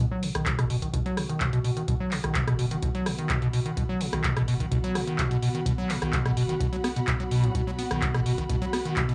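Acid house at 127 BPM in B major, playful and trippy, this short cut opens on a squelchy, resonant square-wave acid bass riff with a filter sweep, tube saturation and digital delay, sitting up front over a round sine sub bass and a dark, bowed symphonic string section that fades in across the full 9.1 seconds. A dry, punchy analog drum machine of handclaps, hi-hat and rim click comes in at 0.2 seconds, an overdriven deep electronic kick arrives at 0.5 seconds, and from 0.7 seconds a warbling, detuned lo-fi pad holds mellow chords through chorus, phaser and reverb. The pad, sub bass and strings pump to the sidechain, all set in a small room with moderate, short ambience.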